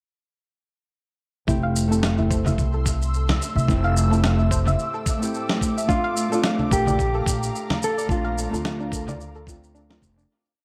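A woody, up-front upright bass anchors this short, complete sunset chillout piece, its pizzicato gut strings giving long gliding notes a dark, thumpy weight from 1.5 seconds. Around it, a blissful, smooth groove in F major moves at 109 BPM in 4/4 with a gentle 16th-note swing. A thumb-plucked nylon-string guitar plays held rootless chords with syncopated pushes through dub echo, while a soft, round filter pluck runs a 16-step arpeggiated sequence with chorus and echo. An ethereal, airy pad with slow attack and tremolo sustains chords, and a sampler-style kit of gritty soft kick, fat snare, shaker and low conga lays down a light lounge beat re-recorded in a large room. At 5.9 seconds, as the harmony moves from Fmaj7 to Bbmaj7, a clean, fingered electric guitar enters up front with a motif-based melody through tape echo. The echo-heavy mix, bathed in spring reverb and digital ambience, fades out from 7.4 seconds.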